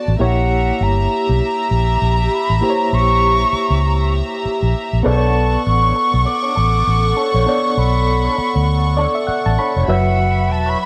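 Lush 1970s-style soul in B minor at 99 BPM with a swung sixteenth feel, this bittersweet, silky excerpt sets an airy, distant concert flute melody over a floating, bowed studio string section with slapback echo, a barky, lightly overdriven reed electric piano with fast tremolo that adds a fill at 8.7 seconds, and a round, foam-muted electric bass up front, while a slightly broken-up, lo-fi electric guitar riff with wah and tremolo joins in the background at 5.0 seconds as the chords move from a rootless F#7b9 through Bm9 to F#7sus4, all in light studio reverb.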